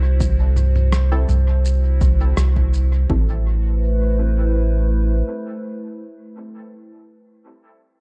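Ambient dub in a spacious, meditative mood, cut from a longer piece, where a warbling, nostalgic tape-like pad sustains an Am7 chord over a deep, round sub bass up front, while a reversed, dreamy swelling texture drifts in the background, a punchy overdriven electronic kick and a muffled, pitched-down sampler-style kit of rim click, shaker and toms with dub echo play from 0.2 seconds, and muted, detuned chord stabs with chorus and dub echo enter at 1.1 seconds, all within a dark digital ambience.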